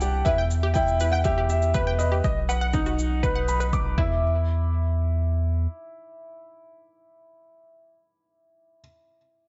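Cinematic and hypnotic, this piano and strings electronica excerpt at 121 BPM opens on a drop over Em and B, where a soft, felt-muted upright piano with audible action noise carries the melody and an up-front baby grand plays a riff, both through tape echo, above a round, deep analog bass with sidechain pumping, bright detuned unison pluck arpeggios, and a punchy overdriven electronic kick and shaker in studio reverb, until the rhythm parts drop away by 5.7 seconds and the pianos ring on alone in a small room.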